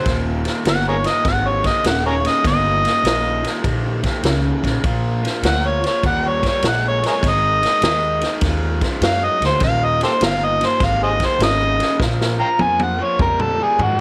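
An overdriven, amplified harmonica takes a gritty, up-front solo across this 14-second excerpt from a longer electric blues shuffle, its jazz-style lines punctuated by tongue slaps over a swung 100 BPM groove in 4/4 that moves through Eb7, Bb7 and Ab5. Underneath, a raw garage guitar picks a bright, overdriven riff, a woody upright bass with gut strings plays thumpy pizzicato, and a swinging big-band kit with a punchy kick, ride cymbal and medium-tuned snare drives the feel before a drum fill from 12.0 seconds. The mood is soulful and rough-edged, set in a small room with light reverb.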